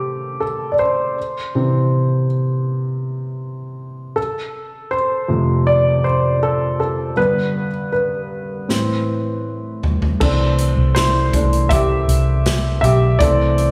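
Longing and emotional, this pop ballad fragment in straight 4/4 opens with a present, up-front baby grand piano playing alone, moving through major chords before settling on a minor one, all bathed in a lush hall reverb. At 8.7 seconds a natural acoustic drum kit with a punchy kick and medium-tuned snare enters with a fill, and at 10.2 seconds a dark, round, foam-muted electric bass joins low beneath the piano as the passage shifts into a new section.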